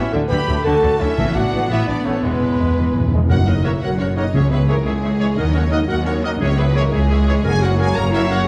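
Set in a straight 6/8, this triumphant, soaring heroic adventure film-score cue has dark, expressive violins carrying the melody over lush, rich violas, cellos and double basses, while a second, intense violin section and an airy, close-miked flute add counterlines, mellow French horns and tight trombones sustain chords, a clear, roomy trumpet plays stabs, and a ringing, thumb-plucked harp spins arpeggios; hard-mallet timpani enter at 1.2 s with a fill from 2.2 s, a bright, vintage clarinet joins at 3.3 s, and the whole cue sits in a wet concert-hall reverb.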